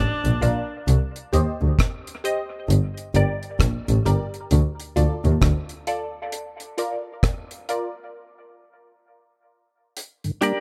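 Set in a light, small-room ambience, this spacious, heavy dub reggae break opens with a clear, distant tenor saxophone note trailing dub echo, while a dark, bowed double bass plays up front until 5.5 seconds. A dry, deep drum kit with a tight kick, hi-hat and rim click carries the groove, and a muted, detuned sawtooth chord stab with a filter pluck, phaser and dub echo decays through Bb, Cm, Gm, Dm and Bb changes before a chordless stretch. Near the end, a soft, flute-like tonewheel organ with chorus vibrato and key click appears at 10.2 seconds, followed by a bright, twangy electric guitar with tremolo.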